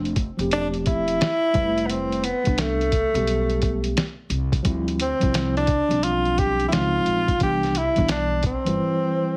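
A breathy tenor saxophone solo with vibrato, scooped notes, slapback echo and plate reverb sits up front over mellow tine electric piano and woody pizzicato upright bass from the very start of this cool, relaxed jazz-hop cut in C major at 87 BPM with a swung 16th feel, joined at 0.1 seconds by a muffled, pitched-down sampler-style drum kit with a thumpy kick, the whole mix squeezed into a heavily compressed radio-like sound as the chords move through G13sus4, Fmaj9#11, Dm11, Dbmaj7 and Cmaj7 until bass and drums stop at 8.8 seconds, leaving saxophone and electric piano to carry on to 9.4 seconds.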